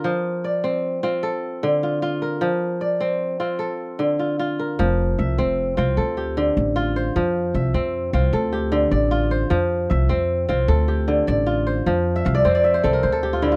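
A dry, close recording with a 1970s studio character and little reverb places both instruments up front. This is West African traditional string music in F major, moving at 102 beats per minute in dotted quarters over a straight 12/8 feel, with a flowing, hypnotic mood. The fingerpicked kora opens alone, spinning ringing, crisp arpeggios from D3 to F5 over a steady alternation of F5 and Dm chords. At 4.8 seconds a pizzicato upright bass with steel strings joins in the low register, its woody, thumpy tone carrying a bright edge beneath the kora. Near the close the kora adds a short fill from 12.2 seconds before this section of a longer piece cuts off.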